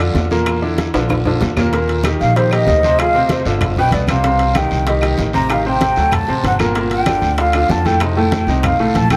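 Set back in a moderate plate reverb, this passionate, danceable salsa excerpt rides on a brilliant, up-front upright piano with audible action noise and a growly, thumpy pizzicato upright bass, while low-tuned congas, tight high-tuned bongos, ringing timbales, a raspy guiro and woody claves fill out the percussion, a drum fill arrives at 0.9 seconds, and from 2.2 seconds a breathy concert flute with vibrato and a crisp attack takes an expressive solo.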